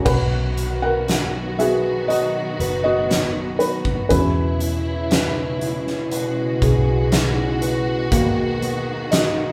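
A heartfelt, emotional pop ballad in B major at a slow 60 BPM, this short cut centres on a soft, felt-muted upright piano with audible action noise carrying the lead from 0.1 s, framed by fingerpicked steel-string acoustic guitar arpeggios through digital delay, a round, foam-muted vintage electric bass, lush bowed strings with vibrato, a huge arena drum kit with a fat snare and punchy kick, and a barely audible jingly tambourine at 9.1 s, all captured as a band playing live in one room with wet reverb over chords moving from B to E6 to G#m7/D#.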